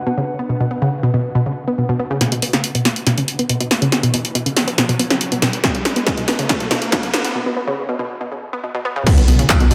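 A straight 4/4 pulse drives this hypnotic, industrial peak-time techno, where a round, up-front analog pluck riff with chorus and delay and a mellow, warbling lo-fi pad in the background are joined at 2.2 seconds by a punchy analog drum machine fill of snare, claps, hats and crash in a short room, building under filter sweeps and a background riser, with an overdriven, heavy electronic kick arriving at 5.6 seconds before a break and impact, and a dark, rumbling detuned saw bass with tube saturation landing at 9.3 seconds, all sitting in a dreamy, plate-reverb-soaked mix with sidechain pumping on the pad, pluck, hats, cymbals and bass.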